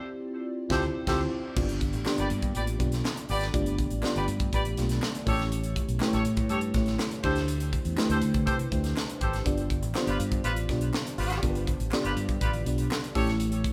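This excerpt of polished 1980s jazz-funk pop opens on the FM electric piano with its soft pad layer, lush and dreamy with a chorus shimmer, as the band hits an accent in the first 1.6 seconds. At 122 BPM in a straight 4/4, the mood is urban and nocturnal, moving from Dm11 through G7, A7 and D9sus4. The fretless electric bass enters at 0.7 seconds with a warm, amped tone, joined by a crisp fusion drum kit whose high-tuned snare, punchy kick, hi-hat and crash sit up front. A clear vintage horn section carries a second line with light vibrato and a loose pop feel, touched by tape echo. A very quiet group handclap comes in at 2.1 seconds, and a moderate stone-room reverb gives the live band a shared space.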